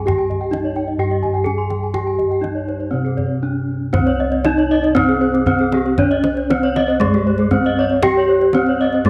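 Moderate echo-chamber reverb and small-room ambience surround this brilliant, shimmering Balinese gamelan passage in 4/4, cut from a longer piece, which moves into a new section at 3.9 seconds. Up front, a boxy, warm bronze metallophone struck with a horn mallet carries the melody. Two more metallophones play arpeggios above it, one ringing under a wooden mallet and the other dark and smooth under horn, their paired tuning setting off pulsing beats, while round bossed gongs hold the bass and a deep, close kendang played with hard hands enters at 0.1 seconds.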